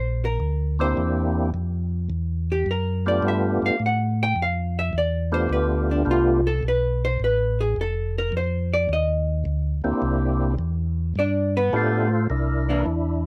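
Lightly reverberant and up front, this bluesy, greasy soul jazz organ trio excerpt swings over C9, G9 and F5 chords as a dark, clean hollow-body archtop guitar takes a picked solo from 0.0 seconds, a mellow, round tonewheel organ holds the bass on a slow rotary speaker, and a fat, lightly overdriven, percussive organ with key click and chorus vibrato plays the melody from 0.8 seconds, returning at 9.8 seconds.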